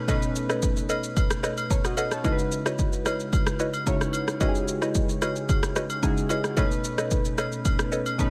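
A punchy, tape-warm deep house drum kit of kick, rim click and shaker sits up front in this deep, hypnotic amapiano excerpt at 111 BPM in straight 4/4, in C# minor and tuned to A4 = 438 Hz. Round analog keys built from pulse and sawtooth waves carry the accompaniment with a filter sweep and chorus, moving from B9 to C#m11 at 2.2 s and back to B9 at 6.6 s. A woody, mellow FM pluck with a noise layer adds chorused, delayed stabs, while agogo bells and woodblock with a small-room acoustic character sit low in a dry mix.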